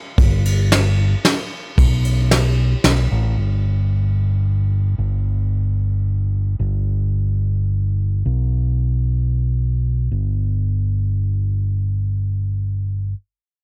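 A soft brush drum kit, with a fat snare and tight kick in a small, natural room, opens this nostalgic, hopeful indie folk piece in 3/4 alongside a dark, round fingered electric bass held low and up front. The drums stop at 3.0 s, and the punchy bass then carries the building arrangement alone until 13.1 s. The tempo moves between 89 and 113 BPM and slows from 6.6 to 10.1 s, all in a dry, close sound with little reverb.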